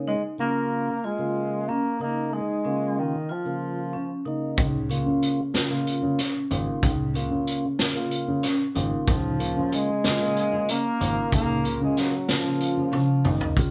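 A breathy, up-front bass clarinet carries the melody with jazz-style vibrato, shadowed by a distant, roomy trombone on a second line. The two wind parts drop out together from 4.3 to 9.1 seconds, while a clean tonewheel organ with key click and a metallic, ringing vibraphone keep up arpeggios and accompaniment throughout this intricate, driving progressive piece in 7/8. From 4.6 seconds a dark, mellow grand piano takes the bass and a gritty, saturated garage drum kit with a punchy kick joins in, closing on a drum fill at 12.9 seconds, all played live in one room with light reverb.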